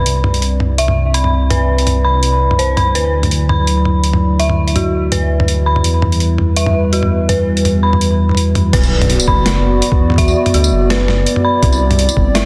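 Half-time drum and bass at 166 BPM in B phrygian, heavy and dark, where a moody, wave-folded analog pad with sidechain pumping and an eerie, inharmonic FM bell arpeggio through chorus and dub echo ride over a deep, rumbling detuned saw bass and a gritty, pitched-down sampler-style kit with an up-front high-tuned snare, until at 8.7 seconds the drop brings in an overdriven, thumpy electronic kick and a background electronic impact, all in a dense, heavily limited mix.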